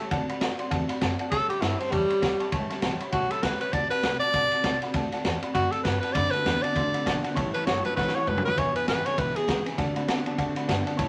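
A swung 4/4 at 199 BPM sets this rowdy, retro rockabilly fragment in motion, cut from a longer piece and moving through dominant-seventh changes on D7, A7 and E7. A breathy, up-front tenor saxophone carries the pop-style solo melody with vibrato until 9.7 seconds, while a vintage drum kit with a punchy kick, high-tuned snare and dark cymbals keeps time and plays a fill at 8.0 seconds. Underneath, a thumpy, gut-strung upright bass plucks a woody low line, and an intimate upright piano with audible action noise and short sustain comps in its upper register. A very quiet, full-bodied dreadnought acoustic guitar adds picked accompaniment with faint finger squeak, and at 6.2 seconds a twangy, slightly broken-up electric guitar through a small old amp joins with a bright riff. Moderate studio reverb and a layer of vinyl crackle give the whole recording an aged, lived-in sheen.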